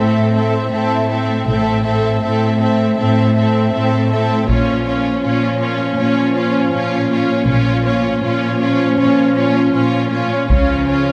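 Dramatic and epic, this brief cinematic film-score build-up moves at a steady 80 BPM in straight 4/4, its bowed string sections carrying lush vibrato throughout: a dark, woody violin melody rides over a focused second violin line, an intense viola accompaniment and an up-front, smooth cello bass, with a woody double bass section joining at 1.5 seconds. A dark, distant French horn section holds sustained chords beneath, while a taiko ensemble struck with hard sticks breaks in at 4.5 seconds and again at 10.5 seconds as the harmony shifts from A minor through A# minor to C#. Moderate scoring-stage reverb gives the whole ensemble a spacious, cinematic sound.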